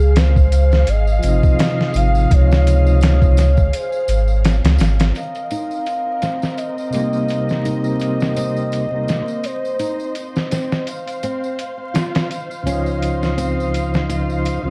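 A gritty, pitched-down sampler drum kit with a thumpy kick sits up front in this melancholic, cinematic trip hop fragment with a gently swung feel, alongside a round sub bass that stops at 5.1 s, a slow-rotary tonewheel organ with key click, a veiled con sordino violin section holding lush sustained chords, a breathy, gliding sine lead with chorus and dub echo, a tambourine in the background, and, from 5.5 s, a fingerpicked nylon-string guitar with 12-bit grit under a filter sweep, the whole mix carrying dark production, vinyl crackle and small room ambience.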